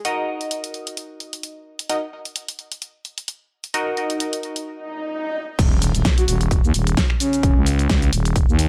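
Set in a digital ambience, this aggressive, bouncy bass house excerpt in Eb minor at 130 BPM with a swung 16th feel opens on a nasal, band-passed sawtooth chord stab on Ebm with a filter sweep, phaser, delay and sidechain pumping over a big-room kit of crash, snaps, hi-hat, shaker and a huge snare, breaks at 4.7 seconds as a background swell builds, then drops at 5.6 seconds on an impact into a growling, tube-saturated FM bass and a punchy layered kick, with a breathy, flute-like synth lead carrying chorus, vibrato and delay from 6.2 seconds.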